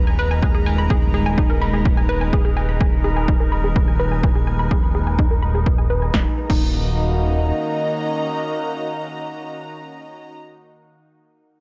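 A straight pulse from a punchy, tape-warm electronic kick sits up front, joined by a dry analog drum machine's snare, hi-hat and crash, all dulled by low-pass filtering, in this cinematic, melancholic stretch of melodic techno cut from a longer piece. A thick, detuned sawtooth bass and a round, bright, chorused analog pluck playing arpeggios through tape echo and a filter sweep pump against the beat. Meanwhile a morphing, warbling wavetable pad with phaser holds sustained chords, a tense ring-modulated drone sustains in the background, and a dark, intimate sul tasto string section that fades out adds texture. At 6.1 s the harmony shifts, the drums and pluck stop at 6.6 s, and the bass drops out at 7.5 s, leaving the pad, drone and strings to linger in a light digital ambience.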